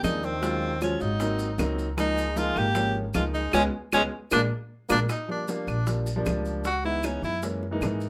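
This Afro-Cuban jazz piece at 154 BPM in 4/4 is sunny and sophisticated, cut from a longer performance. A bright, vibrato-rich tenor saxophone carries the melody up front over a soft-attack trombone second line that stops at 5.0 s. Beneath them sit an intimate grand piano with audible action noise, a thumpy pizzicato upright bass, round, low-tuned bongos and woody claves in the background, and grainy, distant maracas. A band accent and drum fill lead into the saxophone solo at 5.1 s, over chords such as Ebm11, Db69 and Gb9, all in a moderate club reverb.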